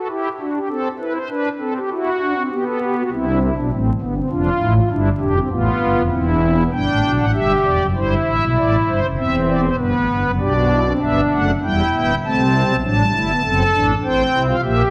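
A pipe organ on its soft, shimmering string-celeste stops carries this joyful, elegant baroque-style four-part fugue alone, sitting up front and ranging from D1 to A5 at 99 BPM in 3/4, tuned to A4 = 437 Hz. Its romantic voicing moves through sunny major harmony around G and C before turning toward E minor, A minor and a diminished chord after 10.4 seconds. The sound is bathed in a lush scoring-stage reverb and aged by worn cassette tape with warbly pitch drift and vinyl crackle, in a brief cut from a longer piece.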